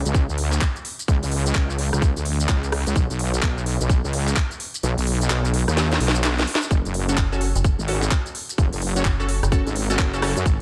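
Gritty and aggressive, this bass house excerpt drives at 128 BPM in 4/4 with swung sixteenths, set in F# minor. An up-front wobble bass, heavy and saturated with detuned sawtooth unison and chorus, pumps against a tight electronic kick. A garage kit supplies handclaps, crisp hats, rim clicks, shaker and a cracking snare, and both drum parts carry a tape-warm sheen from being re-recorded in a large room. The kick drops out at 4.8 seconds, and a drum fill from 5.8 seconds leads into an F# minor chord. From 7.1 seconds a bold, punchy orchestra-hit-like stab cuts in, bright and layered with noise, ring modulation and a filter sweep, trailing reverb and dub echo, and a dark, metallic FM bass joins it briefly within a digital ambience.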